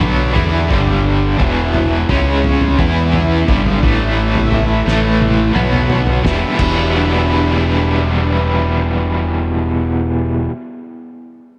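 An up-front, double-tracked stack guitar drives a bright, overdriven riff with tremolo through this hypnotic, mysterious psychedelic rock passage, cut from a longer piece, backed by a growling, punchy fingered bass. A muffled, cloth-damped drum kit with a fat snare and dark cymbals sits in the background, playing a fill from 4.8 to 6.2 seconds before dropping out at 6.8 seconds. A vintage string machine sustains mellow sawtooth cello chords through ensemble chorus, and a moderate plate reverb soaks the whole dreamy mix.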